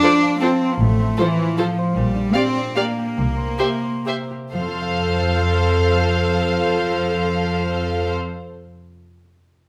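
Classical string writing in 3/4 and F major, this brief excerpt from a longer piece feels festive and sweeping, moving with rubato at a tempo between 121 and 166 BPM and slowing down from 1.4 to 4.5 seconds. A dark, woody violin section carries the melody with vibrato, sounding distant and lush, while a second violin section adds a floating, pure second line with a soft attack. A close, intimate viola section fills in the accompaniment, and an up-front cello section anchors the bass, joined at 0.8 seconds by a dark double bass section. Concert harp arpeggios ring out across a broad range and sustain until 8.5 seconds, just past the bowed strings. All the strings play sul tasto, and the ensemble sits in a moderate stone room reverb, with the harmony moving from F through F/A, Gm7/Bb and C7 before settling back on F at 4.5 seconds.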